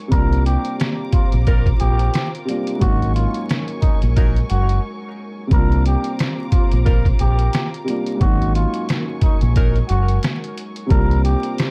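A dark, dry production dusted with vinyl crackle frames this gritty, moody boom-bap hip-hop excerpt, swung on the sixteenths. Muffled, pitched-down sampler drums with a thumpy kick sit up front beside a round, deep fingered electric bass, while a woody, mellow upright piano with cassette-tape colour and a lush, bowed string section carry the harmony over C9sus4 and Ab9sus4 chords. A cup-muted trumpet plays a raspy, growling jazz melody with light vibrato and delay, and a tight saxophone section adds stabs from 1.5 to 9.8 seconds, around a brief break at 4.8 seconds.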